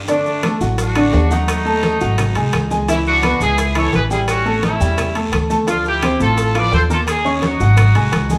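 Salsa at a brisk 172 BPM in 4/4, this festive, sunny excerpt cut from a longer piece features a bright, vintage horn section carrying the melody up front over a clear, worn baby grand piano with long sustain and a woody, growly pizzicato upright bass that enters at 0.6 seconds. Behind them sits a bustling percussion bed of tight, high-tuned bongos, damped congas with hard hands, ringing metal-shell timbales, a raspy guiro, grainy maracas and very quiet woody claves that join at 0.4 seconds. The band plays live together in one large studio with moderate reverb, moving through chords such as D, C#m7, A7 and Dm11.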